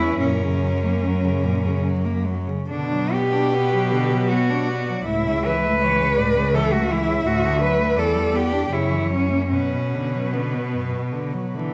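In a rubato 3/4 that drifts between 67 and 85 BPM, this elegiac, melancholic classical passage in B minor for a cello ensemble is cut from a longer piece and moves from F# through Bm, A/C#, D, Em7 and F#7 to settle on Bm/F#. A single intense, bowed cello sings the high melody with vibrato and a smooth top, while a focused, up-front cello shapes a second line and a close, clear cello carries the bowed accompaniment. Beneath them a rich bass cello anchors the harmony, all four voices sitting in a wet recital-hall reverb with a vinyl crackle.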